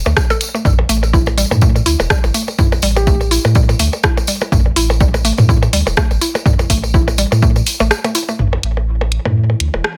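A swung 16th-note groove at 124 BPM in 4/4 drives this cool, hypnotic minimal techno cut in A minor, taken from a longer piece. A punchy, tape-warm electronic kick sits up front beside a layered garage kit of hi-hat and rim click, both in a small room. Electronic blips and toms add small-room reverb and digital delay, while a jingly, bright tambourine rides along with them. Beneath, a thick, saturated sub bass pumps under sidechain, and a woody, mallet-like synth pluck repeats a riff through chorus, pumping and dub echo. At 3.0 seconds a gentle, keys-like synth lead sounds one brief G4 with chorus, vibrato and delay. The kick stops at 7.5 seconds ahead of a short break, the harmony lands on A minor at 8.4 seconds, and at 9.0 seconds a dark, moody pad of detuned sawtooth fades in slowly in the background, the mix staying dry and loud.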